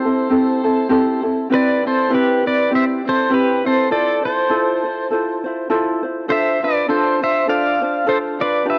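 Relaxed and languid, this swung Hawaiian fragment, taken from a longer home cassette recording, sets an up-front, twangy electric pedal steel guitar, played with fingerpicks, slide and volume swells and colored by tape echo, over a light, thumb-plucked acoustic ukulele, both bathed in a lush hall reverb as the chords drift from Am7 through Cmaj7 and Fmaj7 to Dm7.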